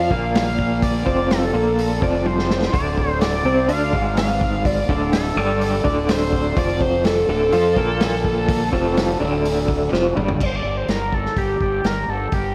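Psychedelic rock at 125 BPM in a straight 4/4, dark and hypnotic, this cut from a longer piece moves from F through Dm7 and Fadd9/D before landing on G5 at 10.4 seconds, all washed in a dreamy plate reverb. A gritty, screaming synth lead carries the melody with phaser, delay and vibrato, over a slightly broken-up guitar riff with tremolo that stops at 10.4 seconds and a round, punchy fuzz bass. A muffled, lo-fi vintage drum kit with dark cymbals and a tight kick keeps time, marked by drum fills at 2.3 and 9.9 seconds.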